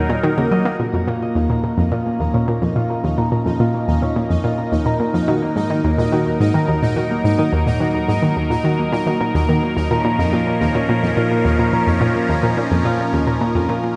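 A round, up-front analog pluck drives this cosmic, expansive stretch of sequencer-driven space music in Bb minor at 107 BPM, playing a low riff treated with chorus, delay and shimmer reverb. Around it, a swirling, phased analog pad holds sustained chords and fades in from 0.8 seconds, a mellow, fingerpicked Celtic harp ripples through arpeggios under a filter sweep, and a pulsing, tempo-synced gated texture enters at 1.4 seconds. The chords move between Ebm and Bbm in a wet scoring-stage ambience, and this section taken from a longer piece fades out from 12.8 seconds.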